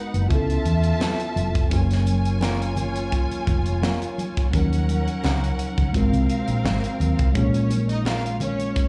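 Heard as a live club set coming through the venue's sound system, this short excerpt carries a light touch of room ambience and a lush, romantic 1970s soul mood with a gentle swung sixteenth-note feel. A tight, acoustic funk kit sits up front, its high-tuned snare, tight kick and hi-hat playing from 0.1 s, while a dark, round hollow-body bass, fingered and amped, anchors the low end just as prominently. A worn, slightly out-of-tune tine electric piano supplies clean, direct accompaniment bathed in lush chorus and slapback echo. A smooth, bowed studio string section adds a vibrato-rich second line with its own slapback echo. From 1.0 s, a bright, twangy, slightly broken-up guitar riff sits in the background with spring reverb and slapback echo, and very quiet, thin-skinned, damped congas join at the same moment. The harmony moves through Db7alt, Gbmaj7, Ebm9 and Ab13 before shifting to Bbm7 at 7.4 s for a brief new section.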